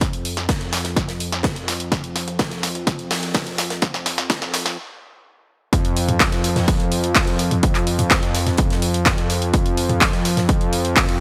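Set in a small, filtered room ambience, this hypnotic, cinematic melodic techno excerpt at 126 BPM in a straight 4/4 builds with a drum fill, halts at 4.8 seconds and drops at 5.7 seconds. An overdriven, layered electronic kick sits up front beside a dry, punchy analog drum machine carrying handclaps, hi-hats, snare and toms. In the background, a gated 80s kit adds hats and a medium-tuned snare from a bright stone room, while a fat, detuned sawtooth bass with a filter sweep and sidechain pumping holds a thick, sustained low end.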